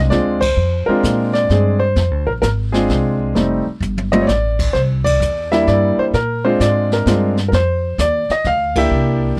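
Piano and upright bass open this short jazz piano trio passage together, with the brushed drum kit joining a moment later in a swung 3/4 at 129 BPM. The mood is warm and sophisticated. A clear, intimate baby grand carries the melody up front, its short sustain and audible action noise giving it a natural, close feel. Beneath it the pizzicato upright bass sounds woody and thumpy, with a steel-string bite. The brush kit sits mid-forward, with dark cymbals, a medium-tuned snare, a boomy kick and a rolled-off top, adding a drum fill around 3.8 seconds between band accents that begin at 0.3 seconds. The harmony moves mostly through ninth chords over a dry, close 1970s-style studio sound, and the passage is cut from a longer piece.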